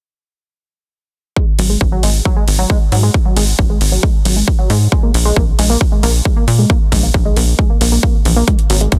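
Bittersweet and emotional, this short cut from a longer uplifting trance piece drives forward at 135 BPM in a straight 4/4, with the synth and kick arriving at 1.4 seconds. A tight sequenced synth plays arpeggios built from detuned sawtooth tones with a plucky filtered attack that sustains and evolves, treated with chorus, digital delay and sidechain pumping. Beneath it, a punchy sequencer bass enters at 1.6 seconds, mixing sawtooth and square waves into a mellow, decaying pluck that sits up front and pumps with sidechain compression. The electronic kick is layered, overdriven and prominent, while the metallic, overdriven hi-hat adds an edge from 1.6 seconds. The harmony moves from F#sus2 over G# to G#sus2 over A# and back, set in a digital ambience and a dense, heavily limited modern master.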